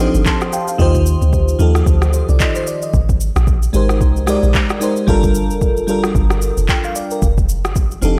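Amapiano at 112 BPM in G minor with a gentle 16th-note swing, soulful and late-night in mood, this short cut opens with a sparkling, chorused FM electric piano fill in the first 0.8 seconds before the piano settles into chords moving from F13 through Eb69, Abmaj7 and Gm9. Beneath it, a deep, round log drum bass with a fast, percussive attack and dark decay anchors the low end, while a smooth electronic R&B kit with a soft kick, rim clicks, handclaps and shaker enters at 0.1 seconds, sounding as if re-recorded in a large room. The crystalline piano and the kit sit up front in a dry, gritty hardware-style recording with digital ambience.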